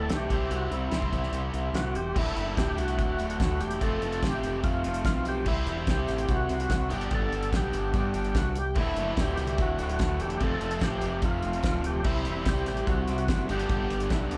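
This short classic rock excerpt sounds like a band playing live together in a large studio, with a moderate reverb around it. At 146 BPM in a straight 4/4, the mood is swaggering and sunny, moving through C, Dadd9, F and G. A gritty, thick overdriven tonewheel organ carries the melody through a slow rotary speaker and chorus vibrato, its key click and second-harmonic percussion giving it a percussive bite. Beneath it, a growling fingered bass with overdrive punches out the low end, while a damped 70s drum kit sits up front with a fat snare, tight kick and dark cymbals. Two bright, picked overdriven guitars play riffs from the start, one crunchy and the other tucked into the background. A jingly, vintage tambourine joins very quietly at 2.2 seconds, and a double-tracked cranked stack guitar adds a faint riff from 8.8 seconds.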